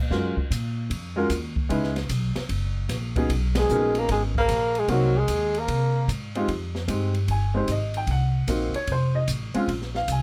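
Dry, close and intimate, this cool, swinging small-group jazz piece moves at 150 BPM in 4/4 with a firm swing, and it is cut from a longer performance. A woody pizzicato upright bass and an up-front upright piano carry it throughout, over an acoustic kit with dark cymbals, a high-tuned snare and a boomy kick. From 3.6 to 6.1 seconds a veiled, growling bucket-muted trumpet takes the melody with raspy, scooped notes and vibrato, while a clear, breathy tenor saxophone plays a lower second line beneath it, before the harmony settles into F minor at 6.5 seconds.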